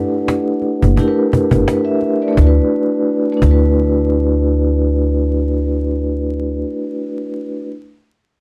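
Mellow, softly struck vibraphone with a fast motor vibrato rings up front through cassette-tape grit and filtering from 0.0 s, moving from G69 to D6 over a nostalgic, soulful boom-bap hip-hop groove at 86 BPM in D major with a lightly swung sixteenth feel, joined by a close, soft-handed cajon with faint snares from 0.3 to 3.6 s and by a dark, thumpy, woody pizzicato upright bass on gut strings sitting prominently in the mix from 0.8 s, the short fragment framed by light reverb and vinyl crackle.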